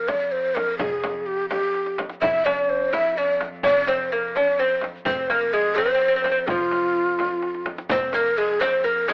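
An AM-radio haze and a small, modest room frame this melancholic, longing Persian modal excerpt in avaz esfahan on F, moving in a straight 6/8 at 85 BPM, where a breathy, up-front ney sings the melody with vibrato and a chiffy attack over a bowed cello drone, a boxy bowed double bass in the background and the soft pulse of frame drum and a very quiet, dry tombak, joined at 2.2 s by a bright, fingerpicked nylon-string lute as a second line, with drum fills before that entry and again before the riq's jingles arrive at 7.9 s.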